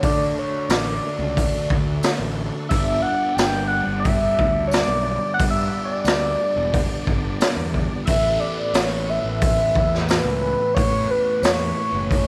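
A straight 4/4 groove at 90 BPM from a boomy, gritty garage drum kit set up front drives this kaleidoscopic, hypnotic psychedelic rock excerpt over D, G and Aadd9, where a round, overdriven fingered fuzz bass and a double-tracked fuzz guitar riff swirling through phaser sit beneath a screaming, guitar-like sawtooth synth lead with chorus and tape echo, while a reedy tonewheel organ spinning in a fast rotary speaker holds sustained chords in the background, a jingly tambourine enters very quietly at 0.7 s, and moderate spring reverb colors the whole mix.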